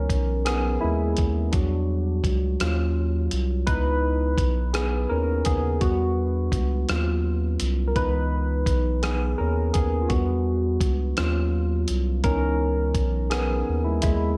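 A slow, straight six-eight R&B groove from a gritty, compressed sampler-style soul kit with a thumpy kick, hi-hat and rim click sets a sultry, yearning mood, as a barky, bright tine electric piano with analog chorus solos throughout over a round, deep analog bass, circling C#m9, Em9 and D#m9 chords in light digital ambience in this fragment cut from a longer piece.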